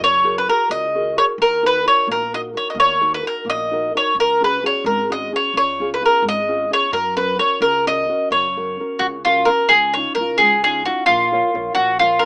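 Heard through a rough home-demo mix with a small-speaker sound and light reverb, this short cut from a longer piece is a lively, romantic Italian folk serenade in a straight 6/8. The mandolin carries the melody up front, its picked double strings giving a woody, acoustic voice. Underneath, a classical nylon-string guitar accompanies with thumb-plucked fresh strings and a warm tone. An upright bass sits in the background, its pizzicato steel strings thumpy and low. The harmony settles through gentle add9 and suspended colours before the music moves into a new passage at 9.7 seconds, where the cut ends at 12.3 seconds.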